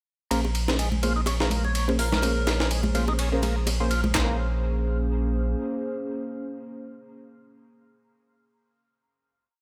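Over a swung, up-front breakbeat at 125 BPM in Bb minor, this short, swaggering breakbeat piece stacks gritty sampler drums with a thumpy kick and high-tuned snare, dry hard-hand bongos and congas, a thick saturated sub bass, an overdriven tonewheel organ riff with key click and slow rotary speaker, nasal band-passed sawtooth stabs moved in parallel with dub echo, a warbling lo-fi pad entering at 1.6 seconds, and a brief airy, telephone-filtered lead, before the breakdown gives way at 4.2 seconds to a final chord held by the pad and stabs.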